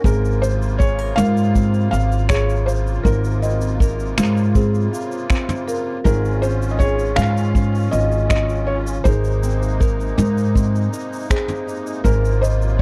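This folktronica piece, cut from a longer work, feels hopeful and delicate in a steady, straight 4/4. A soft, felt-muted upright piano carries the melody with an intimate, mellow tone and audible action noise. Beneath it, a musette accordion holds reedy, shimmering chords roughened by vintage 12-bit sampler grit, while a fingerpicked old ladder-braced acoustic guitar plays dark, boxy arpeggios through tape echo. A marimba with soft mallets adds a round, rosewood second line from 0.1 seconds, also touched with tape echo and sitting in the background. The pizzicato upright bass sits up front with a woody, steel-string tone, anchored by a punchy kick drum, and a vintage brush kit with finger snaps, shaker and toms brings a warm, rolled-off top. The dry, close 1970s-style studio sound has little reverb, and the harmony moves through gentle added-ninth chords over an unchanging Ab in the bass.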